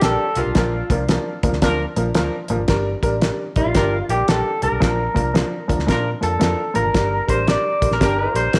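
A small room with light reverb frames this short clip of uptempo 1960s-style soul at 113 BPM in Bb major, swung and danceable, with an uplifting lift as the chords move between Gm and Bb. Up front, a bright, twangy, slightly broken-up electric guitar carries the picked melody through spring reverb and tape echo, over a woody upright piano with short sustain, a dark, round, foam-muted fingered bass, and a cloth-damped, thuddy kit with a fat snare, tight kick, hi-hat and a rolled-off top. From 1.6 s a warm horn section adds a smooth, lightly vibrato second line touched with tape echo.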